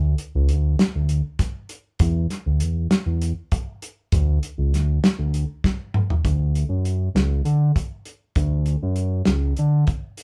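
A smooth, dark synth bass opens this bright, intricate progressive instrumental, its sawtooth and triangle tones colored by ring modulation and vibrato, with fast attacks and sustained notes that evolve as they move between C#2 and D3. The drums join at 0.2 seconds: an acoustic soul kit of hi-hat, kick, snare and toms, with a medium-tuned snare, a tight kick and a rolled-off top that sounds warm in a tight booth with a pumping room character. The music moves in a straight 7/8 at 198 BPM counted in eighths, in D major with tuning set to A4 = 443 Hz, and both bass and drums sit up front in the mix. A drum fill at 5.6 seconds leads into a new section at 6.2 seconds, carrying the band onward until this excerpt, cut from a longer piece, breaks off. The two players sound as if they are performing live together in one studio room, with a moderate ambience and a short decay.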